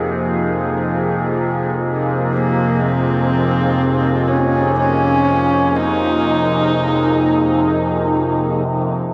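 Dark ambient drone in free time, this desolate, ominous passage is cut from a longer piece and hangs on a single F minor chord. An overtone-sweeping drone holds the low end throughout, its sawtooth and sine tones shifting with moving overtones, wrapped in chorus and its own reverb. Above it, a sweeping resonant pad sustains airy, detuned chords with a noise layer and a filter swell, bright and evolving under its chorus. At 2.3 seconds a single bowed horsehead fiddle enters up front with an earthy, husky melody, touched with light vibrato and portamento and trailed by tape echo, until it falls away at 8.2 seconds. A huge reverb with a long tail drenches the sound, while a worn, warbling cassette surface adds pitch drift and a faint mains hum.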